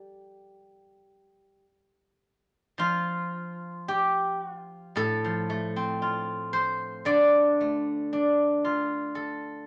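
A steel-string zither played alone with fingerpicks carries this short Chinese traditional passage, its silvery, ringing tone sitting up front and ranging from A2 to D5. The mood is serene and pastoral, moving in a free rubato around 51-59 BPM in 4/4 within the G shang mode, with the opening phrase giving way to a new section at 2.8 seconds. A moderate studio reverb adds gentle space to the acoustic sound in this fragment cut from a longer piece.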